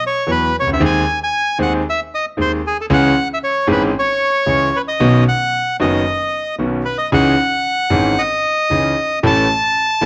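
A reedy, dry bandoneon opens this playful, nostalgic tango fragment up front with the melody, joined at 0.3 seconds by a brilliant, polished concert grand piano whose deep bass anchors an accompaniment moving from Esus2 through C#m and Badd9 to A, played with a rubato feel in 4/4 and captured by close, detailed microphones with light reverb.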